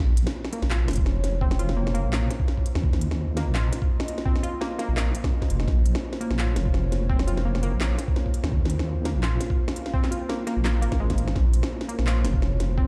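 A heavy, spacious half-time drum and bass excerpt at 169 BPM in Bb minor, sitting in a big bare room with large studio reverb and a lightly swung feel, drops straight in on a Bb minor chord. A deep, sawtooth-and-sine wobble bass sits up front with tube saturation, beneath a moody detuned analog pad carrying chorus, phaser, 12-bit sampler grit and sidechain pumping, while a lo-fi, wave-folded pluck warbles through arpeggios with tape echo. An overdriven kit of woody snare, crisp hats and handclaps enters at 0.2 s, a thumpy, gritty sampler-style kick joins at 1.0 s, and a very quiet electronic swell flickers by at 11.1 s.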